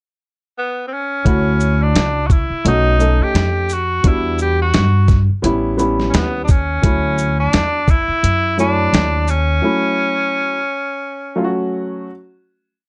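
Jazz-hop at 86 BPM in D major, this short, complete piece sets a cool, warm mood with a swung sixteenth-note lilt over a dark, lightly reverberant production. A clear tenor saxophone opens the pickup at 0.6 seconds, playing a free, jazz-style solo melody with light vibrato, scooped notes and a slapback echo. The grand piano follows with smooth, vintage-toned rootless voicings, pushed chord rhythms and grace notes, moving through Dmaj7, B7, Em9 and A7 before returning to Dmaj7. At 1.3 seconds a pizzicato upright bass enters with a woody walking line full of muted ghost notes and chromatic approach notes, alongside a sparse, sampler-style soul drum kit: a thumpy kick, medium-tuned snare, shaker and quarter-note hi-hats, compressed and carrying 12-bit grit from a small room. The bass and drums drop away before the end, leaving the saxophone and piano, with the piano playing alone to close at 12.1 seconds.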